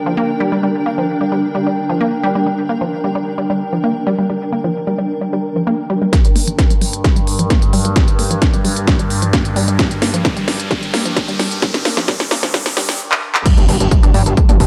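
Dark and relentless, this short clip cut from a longer driving peak-time techno track at 131 BPM in G minor opens with a blurred granular cloud pad and a squelchy, resonant blip pluck riff pumping with sidechain and dub echo. A heavy electronic kick, a techno drum kit with cracking snare, smooth hats, claps, toms and crash, and a nasal overtone-sweeping drone on G2 all enter at 6.1–6.4 seconds for a build-up with drum fills, filter sweeps and a background riser. The build drops at 13.5 seconds into an impact and a gritty, saturated driven synth bass up front.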